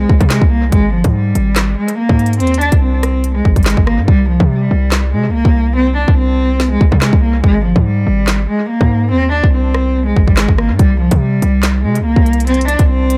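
A dark, bowed cello carries the melody of this ominous drill excerpt, a single player with a woody tone, vibrato and analog delay, set up front in the mix. Beneath it, a hard-hitting 808-style bass delivers punchy, heavy sine tones with a noise layer, fast attack and decaying notes. The electronic drill kit enters at 0.1 seconds with a hard-clipped kick, a snare, crisp hi-hats, handclaps and rim clicks, all sitting forward in the sound. The tempo is 143 BPM with a half-time feel in 4/4, and the harmony in C minor moves between C5 and Ab chords. The hi-hats drop out from 4.1 to 10.8 seconds, thinning the groove. The mix is dry of reverb yet heavy with echo, giving the whole a stark, menacing character.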